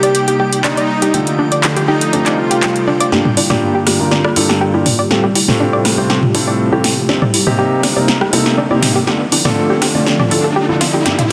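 Bittersweet and dreamy, this progressive house passage in G minor moves at 121 BPM, with a smooth, detuned supersaw melody and a faint, glassy harmonics texture drifting over the opening 3 seconds. Beneath them, an airy, breathy pad sustains chords, a round analog pluck spins chorused arpeggios with gritty sampler character and tape echo, and a filtered grand piano punctuates with short stabs, all bathed in a huge ambient reverb. From 3.1 seconds, the up-front deep house kit, with its punchy snare, metallic hats and overdrive, carries a drum fill through the build-up while a filter sweep moves across the synth pad. Overdriven electronic toms, congas and bongos join at 3.3 seconds, and a very quiet riser enters at 6.8 seconds, all in a dense, heavily limited mix.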